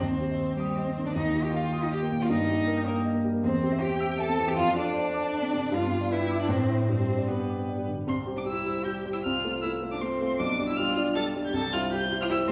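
Cheerful and lively, this quick classical-period movement for piano trio moves at 157 BPM in a straight 3/4 and settles into C major from 3.4 seconds, with a clear, focused, distant bowed violin carrying the melody over a rich, smooth, close bowed cello on the second line, both with vibrato, while a dark, mellow, up-front baby grand piano with a vintage character and long sustain accompanies them in a wet recital hall heard from further back, the passage turning to a new section at 8.1 seconds and ending as a cut from a longer piece at 12.5 seconds.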